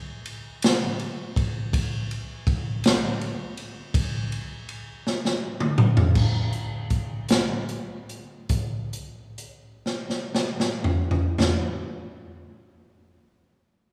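A swinging big-band drum kit carries this short jubilant, uplifting gospel excerpt in 6/8, its punchy kick, medium-tuned snare and dark cymbals sitting up front with an airy, polished sound across crash, hi-hat, ride and toms. Drum fills arrive at 5.1 seconds and again at 9.8 seconds, while the pulse slows through the middle stretch before the kit stops at 11.7 seconds. A moderate concert-hall reverb and the ambience of a church or hall give the playing a spacious, resonant setting.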